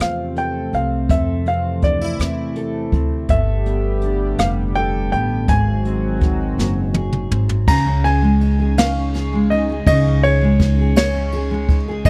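This short cut from a longer piece sounds like a dry, close 1970s-style studio recording, with the piano, upright bass and brushed drums placed up front. It is a romantic, tender pop ballad in a straight 6/8, moving through Fmaj7, Gadd9 and Ab7 before settling on Dbsus2. A concert grand carries the melody in its upper register, its tone intimate and natural, with short sustain and the action noise of the instrument audible. Beneath it, a double-tracked jumbo steel-string guitar fingerpicks a dark, full-bodied accompaniment, while a pizzicato upright bass adds a woody, thumpy low end. The drummer works the kit with brushes, bringing dusky cymbals and a boomy kick, and plays a fill from 6.6 to 7.7 seconds. A shimmering, retro pulse-width pad with chorus and a slow attack holds sustained chords until 7.7 seconds, when it drops out as the next section begins.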